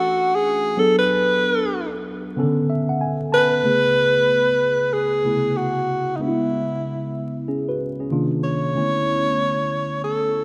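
A rough home demo mix with vinyl crackle and a lush hall reverb frames this introspective, soulful R&B excerpt at 94 BPM, with a swung 16th-note feel in B dorian. A breathy, up-front tenor saxophone carries the jazz-style solo melody with vibrato, scooped notes and a smooth top, its punchy phrases trailed by a slapback echo. Beneath it, a worn, slightly out-of-tune tine electric piano plays phased accompaniment through chords such as Bm7, Amaj9 and Cm11, adding a fill from 2.4 to 3.6 seconds before the second section begins.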